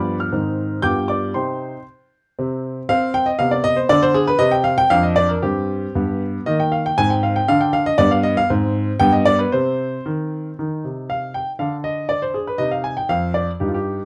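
Set in a flexible 2/4 with a rubato feel, this short excerpt from a classical-period piano sonatina carries a serious, restless mood. A solo grand piano, clear and intimate, sits up front and ranges from F2 to G6, with the natural sound of its action audible beneath the notes. The harmony moves through minor chords, dominant sevenths and open fifths, framed by light reverb and a dark production.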